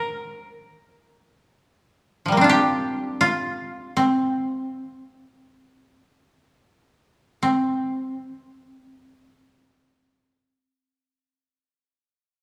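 A solo koto, plucked with fingerpicks, carries this calm, austere fragment of Japanese traditional music, its tone bright, woody and dry, and set up front. The playing moves freely in rubato over a slow 4/4 pulse of about 33 to 49 BPM, drawing on a C suspended pentatonic scale across a range from F3 to D5. The opening passage gradually slows, and a second passage begins at 7.4 s, with the koto falling silent at 11.6 s. A moderate recital-hall reverb and a small room ambience give the sound the feel of a church or concert hall. The recording is a short cut taken from a longer piece.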